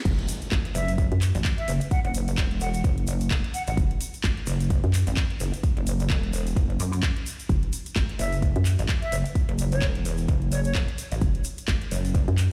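Heard through a big sound system in a bare stone room, this bouncy, gritty bass house drop in F# minor runs at 129 BPM with a swung 16th-note feel. A hollow, knocking FM bass with tube saturation and a punchy electronic kick sit up front, with a house kit of crash, handclaps and metallic hats, a grainy egg shaker and a background impact opening the drop. A saturated, pulsing pluck wobble bass with chorus and overdrive enters at 0.8 seconds, both basses pumping against the kick, while an airy silver concert flute with vibrato and tape echo sings bright phrases from 0.7 and again from 8.2 seconds.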